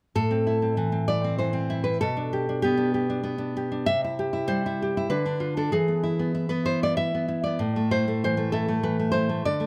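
Close, detailed microphones and light reverb put a solo nylon-string guitar up front, its warm, fingerpicked tone carrying audible finger squeaks. This passionate, intimate romantic classical piece in A minor moves at 97 BPM in a rubato 3/4, tuned to A4 = 443 Hz and spanning A2 to E5. Cut from a longer work, the fragment runs from 0.2 to 9.7 seconds through Am, G/B, C, Dm and E before settling on A5.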